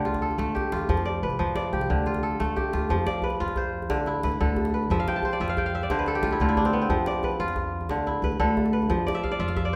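A fingerpicked kora opens the excerpt at once, its ringing, crisp arpeggios sitting up front and spanning D3 to A5, joined from the start by a pizzicato upright bass with a woody, growly tone. This is West African traditional string and xylophone music in 12/8 at 120 BPM counted in dotted quarters, with a straight feel and a hypnotic, joyful mood. A djembe enters at 0.1 s with a tight, cracking sound captured in a live room, sitting lower in the mix than the strings. The bass stays in a dark, thumpy register between C2 and F2 while the harmony moves from D minor and F through richer colours such as Fmaj13, Dm13 and Bdim/F. After a short opening section, the music shifts into a longer second passage at 2.9 s, where the kora adds fills around 4.9 s and again near the close. A wet recital hall reverb gives the whole piece a resonant sense of space, and the recording is cut from a longer performance.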